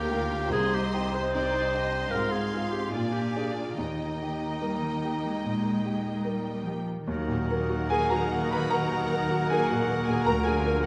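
Unevenly pulsed and pulled by rubato, this romantic movement for piano and orchestra moves at about 74 BPM in 4/4, heard as a fragment cut from a longer work. A clear grand piano sits up front carrying the melody, doubled by a lush, vibrato-laden violin section. A second violin section with a focused tone and a present clarinet weave a second line, while the cello section supplies a smooth bass and the viola section adds expressive portamento accompaniment from the background. The mood is lyrical and passionate, opening in Eb major before darkening into Eb minor at 7.1 s. There an oboe with light vibrato joins the second line, a vintage-sounding bassoon and a tight, mellow French horn section enter very quietly, and the double bass section deepens the low end until the close at 10.9 s. A scoring-stage reverb wraps the ensemble in a generous, wet space, with a softened top end.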